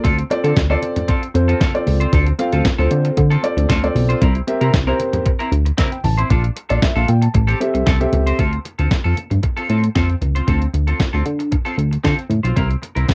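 Late-night and danceable, this cut from a longer early-eighties boogie funk track moves at 115 BPM in D minor, with a glossy, dark synth bass carrying pulse-wave and sawtooth tones, a filter pluck and tube saturation up front over a clean 12-bit drum machine with a thumpy kick and fat snare. A clean, compressed semi-hollow electric guitar plays a picked riff through lush chorus, while very quiet, low-tuned congas add soft-handed, thick-skinned texture. A natural-sounding grand piano accompanies through Dm7, C7, Bbmaj7 and Am7 before dropping out at 8.4 s, and the whole has the light reverb and cassette character of a home recording.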